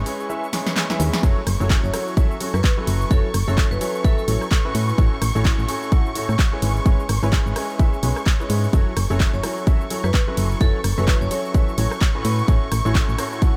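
A lightly reverberant mix opens this energetic, soulful piano house cut at 128 BPM in F# minor, swung on the sixteenths. A brilliant concert grand piano riff with chorus and delay pumps against dark, lush bowed strings holding sustained chords and a round, mellow FM bass, while a punchy analog drum machine supplies claps, hi-hats, ride, rim clicks, shaker and snare, and a layered, tape-warm electronic kick enters at 1.2 seconds after a brief drum fill. In the background, an airy, metallic vibraphone struck with hard mallets rings out a delayed melody at 1.8 and again at 9.3 seconds over chords moving through C#m7/G#, F#m7 and A6.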